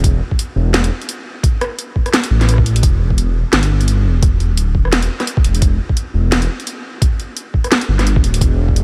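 Half-time drum and bass with a tense, dark mood and a swung feel, this dry excerpt sets a deep, rumbling detuned saw bass against a gritty, pitched-down electronic kick and an up-front layered kit of cracking snare, rim clicks and bright hi-hats, all three playing throughout.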